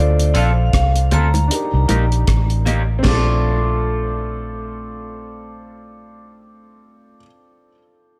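Lovers rock reggae at 78 BPM in Bb major, a tender, smooth fragment cut from a longer piece, with a swung sixteenth-note feel over Dm7, Cm7 and Bbmaj7 in a small room ambience. A ringing, metallic vibraphone with slow motor vibrato and tape echo carries the melody over an intimate grand piano with audible action noise and dub echo, a round, foam-muted electric bass up front, and twangy, slightly broken-up guitar stabs through a small old amp with lush chorus. A dark, dry reggae kit with a high-tuned snare, tight kick and gated reverb plays only from 0.2 to 3.3 seconds, joined by very quiet low-tuned bongos, while the piano rings on alone until 8.2 seconds.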